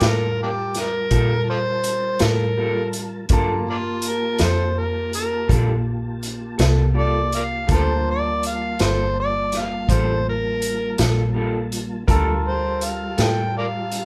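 Smoky and brooding, this slow blues in G minor moves at 55 BPM in a straight 12/8, resting on a single Gm9 chord for the whole 14.1-second excerpt cut from a longer piece. An overdriven, amplified harmonica carries the melody up front, its gritty tone marked by vibrato, tongue slaps, scooped notes and a soft attack in a jazz-inflected solo style. Beneath it, a vintage muted fingered electric bass sits dark, round and punchy, while an acoustic vintage drum kit of hi-hat, kick and snare plays up front with a tight kick, medium-tuned snare, rolled-off top and a pumping small-room sound. A mellow, flute-like tonewheel organ holds sustained chords through a slow rotary speaker and chorus vibrato, and a brilliant concert grand piano with deep bass adds polished accompaniment from the background. An electric guitar through a small old amp, picked and slightly broken-up with a lo-fi edge and harmonic tremolo, drops out at 13.4 seconds, and the whole band sounds as if playing live in one room under light reverb.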